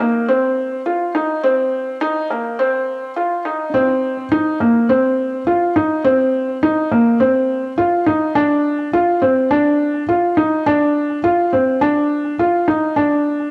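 Home cassette sound with a high-pass filter and a moderate spring reverb in studio ambience frames this cinematic, intimate electronica fragment, cut from a longer piece, in which a mellow, felt-muted upright piano plays alone and up front throughout, its short sustain and audible action noise carrying a build-up that gives way to a drop at 3.7 seconds.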